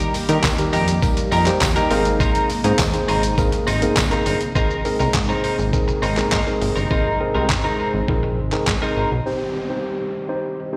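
A straight 4/4 groove at 102 BPM drives this confident, bittersweet dance-pop excerpt: a dusty, sampler-style drum kit with a thumpy kick, fat snare, handclaps, hi-hat and shaker sits up front, while a very quiet, jingly tambourine adds sparkle until 4.4 seconds and a punchy, funky analog bass plucks beneath with sidechain pumping. A worn, slightly out-of-tune tine electric piano and a bright, twangy twelve-string guitar riff both carry slapback echo over a shimmering pulse-width pad in the background, the chords moving from Eb to Abadd9 before settling on C minor. At 9.3 seconds an electronic downlifter enters beneath the lingering electric piano and pad for the final moments, with everything heard through a venue's PA in the light reverb of a recital hall.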